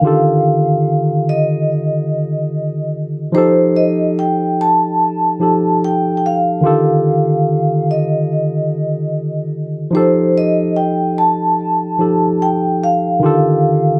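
In a straight 4/4 feel, this silky, bittersweet soul passage, cut from a longer piece, sets a ringing, airy vibraphone melody played with medium mallets and carrying medium motor vibrato and tape echo against a bright, barky, lightly overdriven tine electric piano accompaniment heard through a combo amp, both parts up front in a dark production with moderate studio reverb, as the harmony alternates between Ebmaj9#11 and F9 across its 14.0 seconds.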